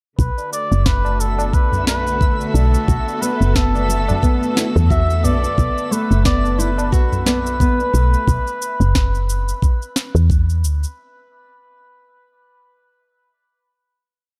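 A woody, round FM bass sits up front in this mystical, hypnotic piece of organic downtempo, its dark, decaying dub-style line pumping under sidechain at 89 BPM in 4/4 with a gentle 16th-note swing over a Bm7 groove in B minor pentatonic. A soft, knocking electronic kick and a produced layer of shaker and sharp snare form the beat, while low-tuned, ringing tabla hand drums sit in the background with a live-room feel. A cup-muted trumpet carries a breathy, veiled jazz-style solo with light vibrato, a free melody echoed by digital delay. Beneath it, a lush studio string section holds bowed, slowly shifting chords with sidechain pumping until 8.3 s, and a faint granular texture adds a twinkling, octave-up shimmer on a held high note, bathed in its own reverb. From 2.9 s a full-bodied nylon-string guitar joins with fingerpicked, delayed arpeggios, complete with finger squeak, in a 12-step loop that drifts against the bar, all within a dark, warm production with light reverb.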